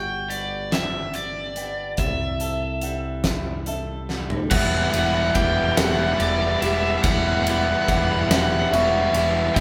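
Post-rock in E minor at a slow 48 BPM in 6/8, this cathartic, cinematic passage is cut from a longer piece and sounds like a band playing live in one room, soaked in a large studio reverb. A bright cranked stack guitar carries the melody with spring reverb, while a clean electric guitar and a felt-muted upright piano, dark and boxy with audible action noise, play very quiet arpeggios beneath it. A growling picked bass adds weight, and a huge arena drum kit enters at 0.3 seconds with a punchy kick, fat snare and cymbals sitting up front. After a drum fill, the chords move from Gmaj7 and C6 to Emadd9 at 4.5 seconds, and two riff guitars join: an overdriven electric guitar up front and a thick, distorted fuzz guitar in the background.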